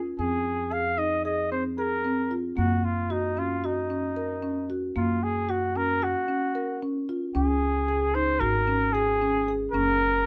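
A light reverb frames this playful, shimmering chamber excerpt in 9/8 at 226 BPM in eighths, set in Gb lydian with a straight feel. Up front, a rosewood marimba with soft mallets plays mellow, round arpeggios, while a dark, woody pizzicato upright bass anchors the low end. A clear, vintage flugelhorn with vibrato carries a pop-style solo melody from 0.2 seconds, through a short break at 6.2 seconds, before the harmony moves through Dbsus2 and Ab7sus4 back to Gb.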